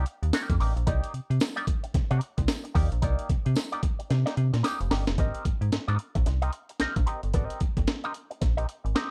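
A swung sixteenth-note groove at 111 BPM in 4/4 drives this sly, funky excerpt of a longer piece. The sampler-style breakbeat kit sits up front, compressed and pitched up, its thumpy kick, high-tuned snare and hi-hat carrying a gritty, tape-warm character, and a drum fill at 4.1 seconds leads into the second section. Beneath it, an up-front FM bass with a metallic, digital tone, fast attack and mellow decay carries a Cm9 harmony that shifts to Abmaj9 at 5.2 seconds. An electric guitar provides clean, fingered, twangy accompaniment through an envelope filter, with wah and a subtle chorus, and sits lower in the mix. A jingly acoustic tambourine stays in the background in a small room until 4.8 seconds, all within a dry, close 1970s-style studio sound touched with digital ambience.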